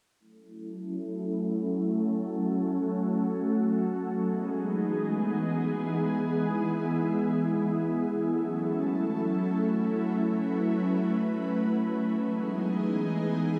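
An airy, detuned pad in chorus-thickened unison sustains alone in free time through this melancholic hip hop fragment, its slow-attack chords moving between F#m7 and Emaj7 in F# dorian, a filter sweep shaping it until 8.2 s, all set up front within a lush hall reverb.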